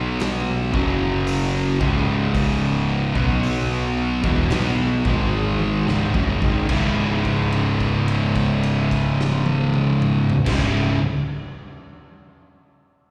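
Heard as a live gig through the venue's PA with recital hall reverb, this hypnotic, heavy stoner and doom metal passage, cut from a longer piece, stacks an up-front thick fuzz guitar riff, a second, very quiet fuzz guitar and a double-tracked, compressed overdriven guitar with slapback echo sitting in the background over a warm fuzz picked electric bass and a raw garage drum kit with a punchy kick, gritty saturation and a rolled-off top, slowing down through B5, F#5, C#5, B5 and C#m until a drum fill at 5.6 seconds leads into a held note from 6.7 to 10.5 seconds.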